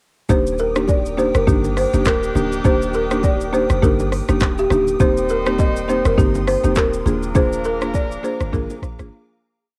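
Joyful and sunny, this short afrobeats piece in Eb major moves at 102 BPM with a swung sixteenth-note groove, playing as a single chorus from start to finish. An electronic, up-front afro-pop drum kit sets the pulse with a deep, soft kick, smooth hi-hats, syncopated rim clicks, shaker and handclaps, while very quiet, bright congas and bongos add an acoustic pattern in a live room. A boomy 808-style bass with a sine tone, a noise layer and a fast attack and decaying tone bounces through a syncopated, sliding line, under a buzzing marimba that strikes dry, woody syncopated chords with medium mallets on hardwood bars. A round balafon played with soft rubber mallets repeats an interlocking riff through tape echo, and a glassy, ethereal FM pad sustains mellow chords with ensemble chorus in the background. From 1.5 seconds a punchy pop-style horn section with light vibrato enters on a second line of swelling long notes, the chords shifting from Ebmaj7 to Cm7/Eb and Bb7/Eb. 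Cassette tape colours much of the home recording in a small room, and the piece fades out from 7.4 seconds into a brief break at 9.1 seconds.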